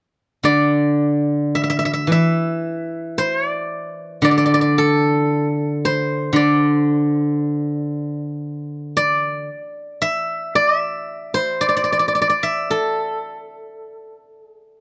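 A steel-string zither enters alone at 0.4 seconds, its fingerpicked notes ringing with a silvery edge in this short fragment of Chinese traditional solo music. The mood is elegant and longing, the pulse loose and rubato, so the phrases seem to breathe freely rather than follow a strict beat. The instrument ranges from D3 up to E5, its acoustic tone warm throughout. Placed up front in a dry, close recording with the character of a 1970s studio, the zither sounds intimate, touched by only a light reverb. The passage continues as one unbroken statement until it is cut off at 14.8 seconds, clearly lifted from a longer piece.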